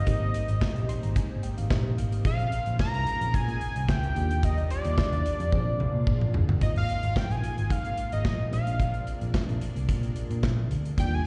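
Heard as a live gig through the venue's PA, this cut from a longer early-eighties boogie funk piece carries a light recital-hall reverb, and its top end stops at 10.5 kHz. The groove is smooth and danceable at 110 BPM in a straight 4/4, driven by an up-front acoustic drum kit with a tight kick, a medium-tuned snare, hi-hat, toms and handclaps, and by a dark, round, foam-muted picked electric bass, amped and equally forward. A fat, detuned sawtooth lead with a sub octave, vibrato and a filter sweep carries the melody through slapback and tape echo. Behind it, an FM electric piano with tremolo, a noise layer and phaser adds fast-attack accompaniment, with a fill between 0.6 and 2.2 seconds. A lush, thick unison pad of detuned sawtooth and square waves holds bright, chorused chords with a slow attack and long release. The harmony moves through Abmaj7, Bbm9, Ebmaj7 and Bb7, and a drum fill from 5.5 seconds leads into a second section at 6.6 seconds that moves from Ab69 to Bb9.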